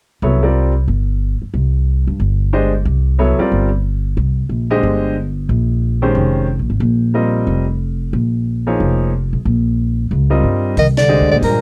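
Intense and searching, this modal jazz excerpt moves at a brisk 182 BPM in 4/4 with a light swing on the eighth notes. For most of its length, from 0.2 seconds, a bright, brilliant upright piano comps up front over pizzicato upright bass with a woody tone and steel strings, the pair moving from C7sus2 to Bbm9. At 10.8 seconds the harmony shifts to Cm9 and the rest of the band arrives, with a band accent landing at 10.9 seconds: a breathy soprano saxophone takes the melody with whispered subtone and vibrato, while a dark bass clarinet adds a distant, roomy second line with scooped notes. A compact cocktail drum kit slips in quietly beneath them, its dark cymbals and high-tuned snare heard only briefly on hi-hat, ride and snare. The sound is dry and close, with the intimate feel of a 1970s studio session and little reverb.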